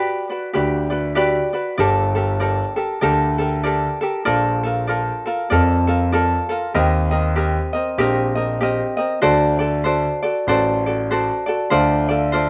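A moderate stone-room reverb surrounds this short fragment of a relaxed, languid Hawaiian piece, with both instruments up front as if the players share one room. A bright, light, fingerpicked acoustic ukulele carries the accompaniment from the first moment with a gentle swing. At 0.6 s a warm grand piano joins, supplying deep bass notes beneath chords that drift from Gmaj7 through Gmadd9, Bbmaj7 and Eb6 to D7 and Dm7.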